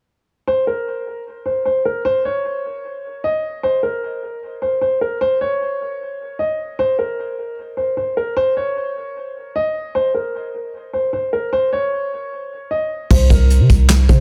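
Over a half-time trap feel, a dark, boxy concert grand piano plays an eerie, menacing melody alone from 0.5 s, its short-sustained notes softened by a low-pass filter and trailed by dub echo in a light, echo-heavy room. At 13.1 s a deep, boomy 808-style bass with a sine tone, a fast attack and a decaying tail enters alongside an acoustic brush kit of tight kick, medium-tuned snare, hi-hat, handclaps and crash cymbal. The hip hop excerpt is cut from a longer piece and ends at 14.2 s.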